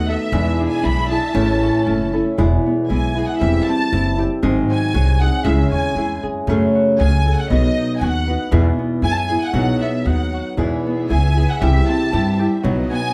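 Festive and romantic, this 13-second excerpt of mariachi-flavored Mexican folk moves at 117 BPM in a straight 2/4, centered in E major. A lush symphonic violin section carries the melody with vibrato, its bowed tone focused and smooth on top. Up front, a dark, small-sounding fingerpicked nylon-string guitar supplies the accompaniment, while a woody, thumpy pizzicato upright bass anchors the low end until 12.8 seconds. A ringing Celtic harp spins arpeggios throughout, and a second, expressive studio violin section holds sustained chords in the background, heard only from 0.0 to 2.4 seconds and again from 10.6 seconds. The harmony travels from E7 and A into colorful turns such as C/E, G#7, C#m and F#madd9 before ending on B, and the whole band sounds as if playing live together in a small, reverberant room.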